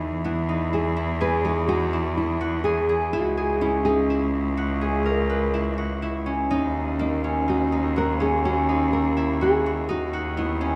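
A moderate concert hall reverb with a 2.5-second tail surrounds this short cut from a longer piece of contemporary chamber music, giving it a hypnotic, pensive air. Set in 7/4 at 124 BPM with a straight feel in Eb phrygian, the trio plays together throughout its 10.8 seconds. A concert harp sits up front with ringing, fingerpicked arpeggios that sound acoustic and warm, while a single bowed cello holds the bass low in its range with a rich, nasal, boxy tone and vibrato, also close and focused. The nylon-string guitar carries the melody in a classical, thumb-plucked style, its old strings lending a dark, woody color. The harmony moves through Emaj7, Dbm7 at 3.1 seconds, Ebm7 at 6.5 seconds and Bmaj7/D#, keeping the mood inward and circling.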